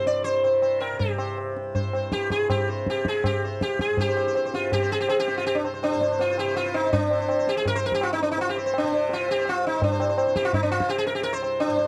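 Introspective and solemn, this short excerpt of Hindustani classical music at 164 BPM in 4/4 sets a plectrum-plucked sitar, buzzing and up front with shimmering sympathetic strings, over a bright, softly plucked tanpura drone and close, low-tuned tabla with a short ring, the tabla entering at 0.1 seconds, the tempo speeding up throughout, and a new section arriving at 4.0 seconds in a dry, close 1970s-style studio sound touched by light reverb.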